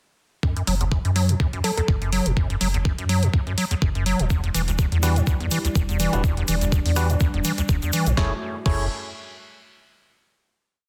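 A squelchy, resonant square-wave acid line with accents and slides opens this hypnotic, gritty acid house piece at 124 BPM, arriving at 0.4 s alongside an overdriven, thumpy four-on-the-floor kick, soon joined by a punchy analog drum machine's hats, snare and crash and a round, deep sawtooth-and-sine bass pumping in a dotted rhythm. A glassy wavetable pluck flashes briefly through dub echo, then at 4.3 s a dark, detuned pad brings in Em7 with a grainy egg shaker playing sixteenths in the background, and bell-like tine electric piano stabs echo until the piece lands on a closing F#m7 chord at 8.2 s. The dense, heavily limited master keeps the kick and acid line up front under light reverb.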